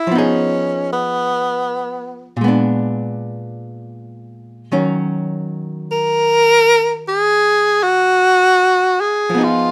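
Intimate and wistful, this brief jazz excerpt moves at a slow 52 BPM in 4/4 with a gentle swing on the eighth notes, set in Eb minor. A breathy tenor saxophone carries the melody throughout, its soft attack, vibrato and scooped notes giving the line a tender, confiding quality as it stays within a narrow middle range. Beneath it, a miked and amplified archtop guitar supplies accompaniment, its picked, clean electric tone sounding dark and hollow-bodied. The harmony passes from Fm7b5 to Bb7b9 at 2.4 seconds and settles on Ebm7 at 4.7 seconds, a classic minor-key turn that suits the reflective mood. Both instruments sit up front in a close, detailed recording with little reverb, so every breath and pick stroke feels near at hand.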